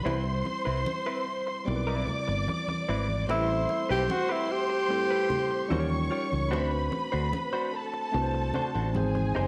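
A lush, smooth 1970s-style soul excerpt at 74 BPM opens on a dark, woody string section with vibrato, a worn, slightly out-of-tune tine electric piano and a round, up-front fingered bass, joined almost at once by a clean, compressed, picked guitar riff and low-tuned, thick-skinned congas set back in the mix. From 3.3 to 6.1 seconds a soft-attack tenor saxophone carries a brief jazz-style melody with slapback echo, floating over rich changes from Cmaj7 through Am9, Eb9 and D7 to Abmaj7. The whole is bathed in a wet echo-chamber reverb.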